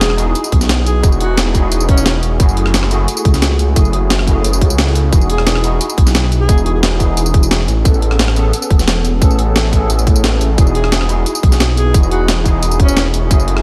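Liquid drum and bass at 176 BPM in E major, warm and dreamy, cut from a longer piece. A bright tine electric piano with ensemble chorus and diffuse ambient delay carries the lush ninth chords throughout, while a menacing, saturated detuned saw bass with a filter swell sits up front beneath a gritty, compressed breakbeat kit of hi-hat, rim click, snare and tambourine, joined at 0.5 seconds by a tight, layered electronic kick. A clear, soft-attacked alto saxophone floats in the background in brief classical-style phrases, bathed in diffuse delay, reappearing at 5.3 and 10.8 seconds.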